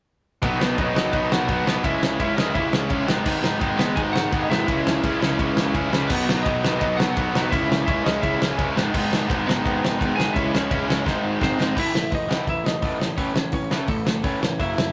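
A straight 4/4 punk rock beat drives this raw, aggressive clip from a loose indie drum kit sitting up front, with a fat snare, tight kick, crashes, hi-hat and ride, and a drum fill at 11.1 seconds. Behind it, a growly fuzz picked electric bass and three picked guitars (a double-tracked crunchy overdriven guitar, a bright distorted electric guitar and a warm overdriven electric guitar) play riffs through a minor-leaning progression, while a dark, compressed, lightly driven lead guitar carries the melody on top. At 11.8 seconds the crunchy and warm guitars drop out as a new section begins, and the whole take has the rough, tube-saturated feel of a rehearsal room with light reverb.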